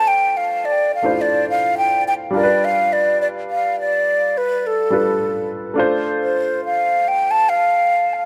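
Longing and smooth, this reggae fragment cut from a longer piece places a breathy, hollow concert flute up front with tape echo, soloing on the melody over a clear, worn concert grand piano with deep bass and short sustain, as the harmony moves from Dm7 to G7 and back to Dm7 within a moderate echo-chamber reverb.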